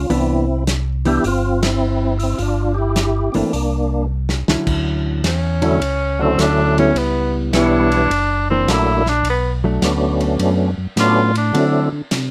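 A percussive, lightly overdriven tonewheel organ with key click carries the melody over a round, mellow organ bass line, both turning through a slow rotary speaker with chorus vibrato, as a dark, clean hollow-body guitar comps and a small-room soul kit with dark cymbals and a tight kick sets a swung 105 BPM 4/4 groove in D major; the band hits an accent at 1.5 seconds and the drums fill at 4.1 seconds before a breathy tenor saxophone with light vibrato takes a soulful, bluesy solo from 5.3 seconds in this closely recorded, lightly reverberant excerpt.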